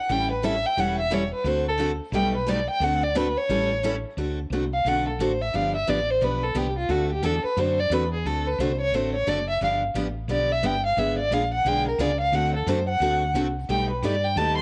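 A warm, bowed violin leads this swinging, charming stretch of acoustic string swing, singing up front with vibrato, a soft attack and expressive portamento as it solos across the whole 14.6-second passage. Set at 176 BPM in D mixolydian with a lilting swing, the piece moves through dominant chords such as A7, D7 and G7, colored by augmented and diminished passing harmonies. A bright, picked steel-string acoustic guitar keeps up accompaniment throughout, close enough that finger squeak can be heard. A second picked guitar with fresh strings sits in the background, playing from 0.1 to 4.0 seconds and returning at 12.3 seconds. Underneath, a woody fretless electric bass gives a round, hollow-body tone to the low end. Light reverb and small room ambience frame this cassette home recording, which is cut from a longer piece, with tape character on the violin and both guitars.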